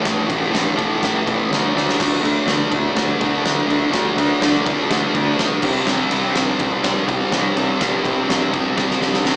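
Heard through a venue's PA in a club with light reverb and a small-speaker sound, this short cut from a longer live garage rock piece feels menacing and raw, moving in a straight 4/4. A thick fuzz guitar leads with a riff from the very start, its double-tracked, distorted tone sitting up front with a slapback echo on it. A growling picked electric bass joins at 0.1 seconds, overdriven and heard both direct and amped beneath the guitar. An oversized low-tuned drum kit comes in at the same moment, its fat snare, punchy kick and dark crash and ride cymbals sounding saturated and gritty in a big, pumping room. The harmony moves through A5, D5 and C5, and drum fills mark 1.8 seconds and the closing stretch from 8.8 to 9.4 seconds.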